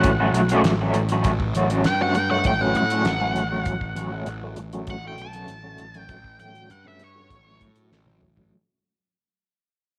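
A hazy, hypnotic psychedelic rock excerpt at 99 BPM opens straight into a dark, octave-fuzz lead guitar solo with wah and slapback echo over a double-tracked, crunchy overdriven guitar riff with tremolo and a filter sweep, a fuzzy picked bass and a cloth-damped, thuddy drum kit with a fat snare and rolled-off top, all sitting on an F#m/A chord in light reverb, tuned to A4 = 436 Hz and fading out throughout until the lead drops away at 7.6 seconds and a drum fill enters at 7.9 seconds to close the excerpt.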